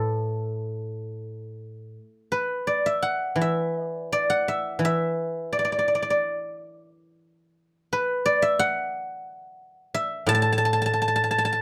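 A solo guzheng, played with fingerpicks, carries this brief cut from a longer piece of Chinese traditional music, its mellow, silvery tone ringing out from a close, up-front position. The mood is elegant and flowing, set in an A zhi mode with a rubato feel that loosely follows a 4/4 metre at roughly 78-90 BPM. The acoustic instrument ranges from A2 up to A5, giving the lines both a low resonance and a bright upper sparkle. A short opening passage gives way at 2.0 seconds to a new section that continues to the close at 11.6 seconds. A moderate small-room reverb adds a gentle halo around each plucked note.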